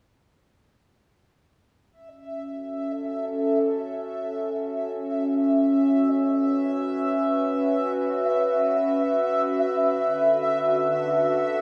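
Drifting in free time, this hypnotic, cosmic stretch of ambient, sequencer-driven space music is cut from a longer piece. An evolving, morphing sine wavetable pad holds sustained chords up front from 2.4 s under a filter sweep, its warbling chorus lending a vintage, full-bodied glow, while a bubbling, resonant sawtooth texture sits high above it in random filter steps. Both parts bloom slowly and fade on long releases, the harmony shifts at 9.9 s, and the whole is bathed in a lush plate reverb with a cassette-tape, small-room character.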